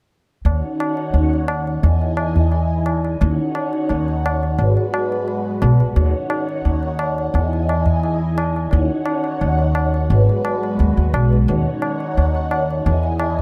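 Trip hop at 87 BPM in Eb phrygian, cinematic and hypnotic, this excerpt from a longer piece sets a full, vintage string machine playing sustained cello chords through phaser and ensemble chorus, circling Ebm7, Emaj7 and Abm7, over a growly, woody pizzicato upright bass with tube saturation and a high-tuned, close and dry tabla entering at 0.5 seconds, all in a small room with light reverb.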